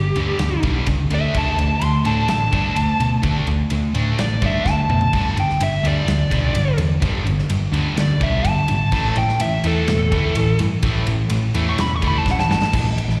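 Anthemic and energetic, this hard rock excerpt at 126 BPM in straight 4/4 features a dark, smooth lead guitar soloing up front with overdrive, plate reverb, slapback and tape echo, moving over chords of G, D5, G5 and A5. Behind it, a crunchy overdriven guitar with slapback echo and a bright distorted electric guitar with overdrive and slapback echo play riffs, while a round, punchy hollow-body short-scale picked bass anchors the low end. A big rock drum kit with a punchy kick and medium-tuned snare enters at 0.2 seconds and plays fills at 4.7 and 12.2 seconds, all captured as a live gig through the venue's PA with the reverb of a recital hall.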